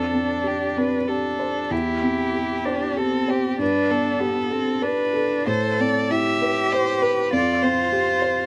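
From the first moment, a felt-muted upright piano with mellow, intimate tone and audible action noise supports a warm violin melody, sung with vibrato, soft attacks and portamento, and a rich, focused cello second line, all up front in this longing, fragile neoclassical fragment in rubato 3/4 at 96 BPM, moving from Fsus2 through C/E, Gadd9 and Amadd9 back to Fsus2 over 8.5 seconds, recorded outdoors with light reverb and cut from a longer piece.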